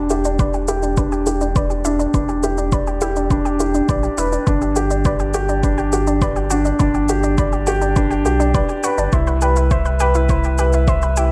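A moderate recital-hall reverb with a digital ambience frames this short, intimate and cinematic slice of piano and strings electronica. An up-front, woody, vintage upright piano plays a riff through a low-pass filter, tape echo and a filter sweep, while a nasal, detuned analog pluck traces arpeggios with chorus, tape echo and sidechain pumping over a deep, round sine sub bass that also pumps. A produced shaker and a layered electronic kick join within the first second as the chords move from Em7 to Gmaj7 at 4.5 seconds and Cmaj7 at 9.1 seconds.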